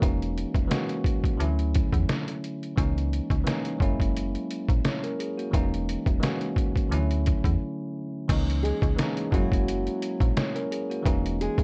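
A swung 87 BPM boom-bap groove from a gritty, pitched-down, compressed sampler-style drum kit with a thumpy kick and medium-tuned snare drives this reflective hip-hop excerpt in C# dorian, where a bell-like, cassette-tinged tine electric piano moves through C#m69, Dmaj9 and F#7 over a metallic, decaying FM bass, a brief break lands at 7.6 seconds, and a fingerpicked nylon-string guitar with finger squeak and delay enters at 8.6 seconds, the mix wrapped in worn, warbling tape and light reverb.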